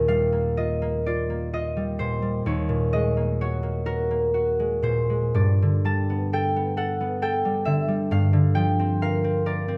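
Graceful and serene, this short excerpt of a classical solo harp piece moves in a slow, rubato 6/8 at around 38-46 BPM, counted in dotted quarters, in E-flat Lydian, tuned to A4 = 441 Hz. The concert harp sits up front, fingerpicked and ringing with a warm acoustic tone across a range from Eb2 to A5. Its chords drift from Ebadd9 through Gbadd9/Eb and Gadd9 to Bbadd9/G, and the harp is set in a moderate recital-hall reverb.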